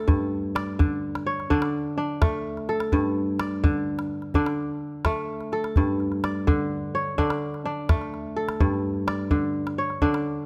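A mellow, ringing kora opens this hypnotic, joyful piece of West African traditional music, its fingerpicked arpeggios spanning G2 to D5 and sitting crisp and up front. A small, dry calabash joins almost at once at 0.1 seconds, providing close, acoustic percussion beneath the strings. The music moves in a straight 12/8 at 84 beats per minute, counted in dotted quarters, with the harmony alternating steadily between G5 and D5. The recording uses close, detailed microphones with a light reverb, giving the kora's plucked tones an intimate clarity. This short passage is cut from a longer piece and stays in a single section, ending at 10.5 seconds.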